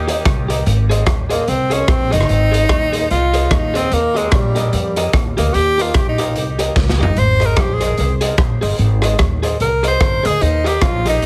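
An upright bass opens this upbeat, joyful ska excerpt in Ab major at 148 BPM with a swung feel, its woody pizzicato tone joined almost at once by a raw, gritty garage drum kit with a punchy kick and small-room pump, and an electric guitar at the edge of break-up sitting lower in the mix as picked accompaniment. From 1.3 seconds a clear, close-miked tenor saxophone takes an up-front solo with vibrato and dub echo, over chords moving between Eb and Ab and a drum fill at 6.8 seconds. The whole is given a heavily compressed, radio-like sound with light reverb.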